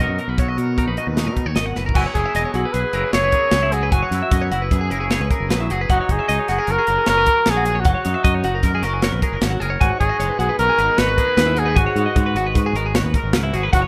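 Math rock and midwest emo at 153 BPM in 5/4, this intricate, playful excerpt from a longer piece pairs a bright twangy electric guitar washed in lush chorus with bright twelve-string electric arpeggios in spring reverb, over a growling, overdriven fingered bass and a crisp fusion drum kit with dark cymbals and a tight kick. After a drum fill at 1.8 seconds, a warm, punchy trumpet with light vibrato takes the melody from 1.9 seconds, moving through Bmaj7, F#9sus4 and D#m7/F# harmony. The sound is a rough home demo mix with small room ambience.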